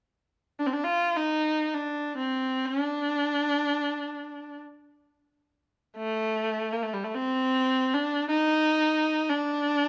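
A single bowed kamancheh carries this soulful, longing fragment of a Turkish makam ensemble piece, entering at 0.6 seconds and playing solo in free time in D makam kurdi, tuned to A4 = 439 Hz. Its clear, focused tone sits up front, shaded with vibrato and portamento as it moves between G3 and F4. Close, detailed microphones and light reverb frame the performance, which is cut from a longer piece.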